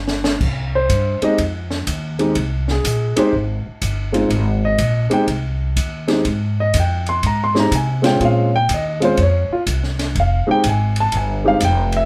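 Jazz piano trio in F minor at 123 BPM with a swung 4/4 feel, this cool, late-night excerpt opens with a short drum fill before the grand piano takes a solo that runs to 12.1 s over Fm9, shifting to Bbm9 at 8.2 s and settling on Fmadd9. The intimate, natural, up-front piano carries audible action noise, while the woody, growly pizzicato upright bass sits close beside it and the acoustic kit adds ride, hi-hat, crash, a high-tuned snare and a boomy kick. The trio plays live together in one room, with moderate studio reverb giving a sense of space.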